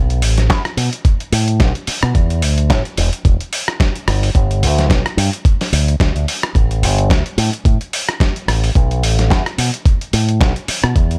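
A steady 4/4 nu-disco groove at 109 BPM carries a light swing on the 16ths, giving this short excerpt a cosmic, sleek mood. A fingered electric bass with an envelope filter starts at 0.0 s, punchy and direct, ranging from E1 to B2 and breathing with sidechain pumping. From 0.1 s a dusty soul sampler-style kit adds hi-hat, rim click and a medium-tuned snare, compressed and tape-warm, with studio reverb. A gritty, thumpy electronic kick joins at 0.5 s, also set in studio reverb. Bass and drums sit up front in a mostly dry overall sound.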